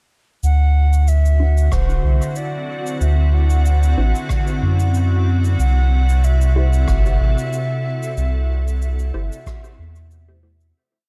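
Opening at 0.4 s with an airy wooden flute motif steeped in dub echo over a round, up-front sub bass and a sparse, echoing cabasa and rim click, this spacious, peaceful ambient dub piece at 93 BPM in D mixolydian moves from D9 to C6 as a calm, detuned organ-like pad with ensemble chorus, a bubbling, resonant stepped-filter texture holding a high note, muted phaser-tinged dub chord stabs under a filter sweep, and a soft, deep electronic kick in the background fill out a dark small-room mix that fades out from 7.3 s.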